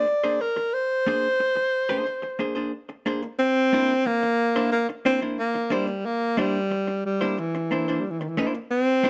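Funk at 90 BPM in C mixolydian, this energetic, playful snippet from a longer piece features a close-miked, whispery alto saxophone soloing up front with vibrato, scooped notes and a plate-reverb sheen, over a dark, clean, compressed picked hollow-body electric jazz guitar moving from Bb9 to C9 at 3.4 seconds in a moderate studio room.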